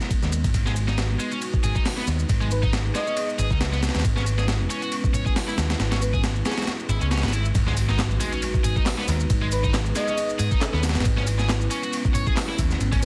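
Swung, gritty breakbeat drums with a thumpy kick and overdriven snare drive this funky, raw breakbeat excerpt, layered over a tape-warm garage kit of claps and shaker in the background, an up-front amped picked bass, a scooped, double-tracked high-gain guitar riff with delay, a deep detuned analog pad pumping under sidechain, and brief breathy flute-like synth phrases with vibrato, while an electronic swell and impact at 6.9 seconds lead into a drop at 7.6 seconds within a dense, heavily limited master dusted with vinyl crackle.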